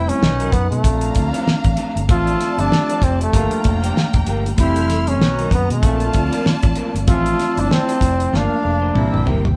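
This short excerpt has a roomy, live-band sound, with a moderate studio reverb wrapping a group playing together in one space. It is lush, smooth 1970s-style soul at 96 BPM in 4/4, with a gentle sixteenth-note swing and a chord cycle moving through Bmaj7, Bbmaj7, Dm7 and Gm7 before landing on C7. Up front, a breathy flugelhorn carries the melody with a soft attack, scooped notes and an intimate, whispered vibrato, while dark, bowed symphonic strings sing a second line above it with a smooth top. A mellow tine electric piano heard through its built-in speakers fills in the harmony, and a round, foam-muted fingered bass gives punchy, amped low end. A twangy, slightly broken-up guitar riff and distant jazz-style horn stabs sit in the background, as the dry, up-front drum kit, with its fat snare and tight kick, closes with a fill from 8.3 seconds.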